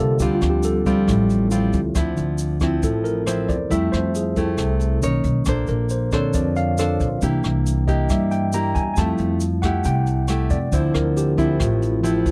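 Over a straight bossa nova pulse, brushed drums with a boomy kick, hi-hat and rim click join a grainy, bright tube shaker at 0.2 s beneath a clean, up-front tine electric piano solo, fingerpicked nylon-string guitar with audible finger squeaks, and woody pizzicato upright bass, all moving through lush chords such as Dm11, Fmaj9 and C7 in an intimate, wistful fragment cut from a longer piece, captured with a dry, close 1970s-style studio sound.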